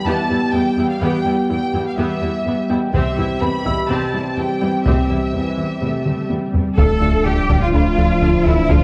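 A distant, lush violin section carries the melody of this brooding, futuristic hybrid orchestral and electronic film cue at 125 BPM in D dorian, over a hollow, flute-like pad with chorus, a mellow French horn section, a felt-muted upright piano with delay, a focused viola section, a juicy, squelchy blip pluck playing arpeggios, and a clear cello section on the bass, as the chords move from Em to C. Heavy-stick taiko drums enter in the background at 2.9 s and play a fill just before 6.8 s, when the harmony shifts to Dm and the low end thickens with a round, nasal analog bass riff, a woody double bass section, a very quiet tuba and a saturated sub bass, joined by an expressive second violin line and a tight trombone section. The dark production sits in a moderate scoring-stage reverb, and the cue is cut from a longer piece.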